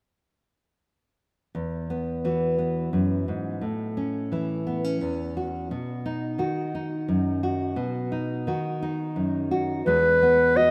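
A full-bodied, fingerpicked nylon-string guitar sits up front in this peaceful folk excerpt in 3/4 at 86 BPM in E major, playing from 1.5 seconds through Eadd9, Aadd9 and B chords. At 9.9 seconds a mellow, soft-attacked clarinet in classical style enters up front with a brief solo melody, all set in a lush hall reverb within a rough home-demo mix.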